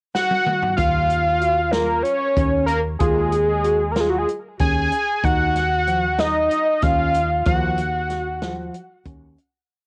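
A driving 7/8 groove from an open jazz drum kit, with a boomy kick and a drum fill in the pickup bar, launches this tense progressive instrumental alongside a fat, detuned analog lead with chorus and vibrato. In this short home cassette recording, a woody fretless electric bass and a barky tine electric piano ostinato in the background join at 0.8 seconds, while the lead carries a free melody up front through the fade-out that begins at 7.5 seconds.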